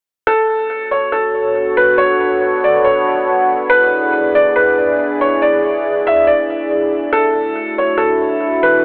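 Melancholic and hazy, this brief half-time hip hop cut at 140 BPM sets an intimate, felt-muted upright piano melody, softened by a low-pass filter and trailed by digital delay, up front alongside a detuned, wave-folded pad that sustains chords through chorus and phaser, moving from Bm9 to E7 to Dadd9, all heard through a narrow telephone-like tone inside a huge ambient reverb.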